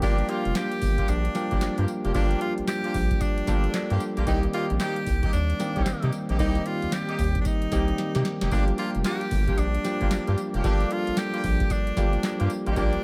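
R&B in a new jack swing style, punchy and confident, rides a swung groove from a booming analog drum machine with a deep kick, tonal snare, metallic hi-hats, handclaps and tambourine, under a round, mellow analog bass. An edgy, forceful tenor saxophone carries the melody with vibrato, while a bell-like tine electric piano with subtle chorus sits up front and a clear, tight horn section adds distant, tube-saturated stabs. The harmony moves from Gm7 to Cm7 and back, with a drum fill at 8.0 seconds, all in light reverb in this cut from a longer piece.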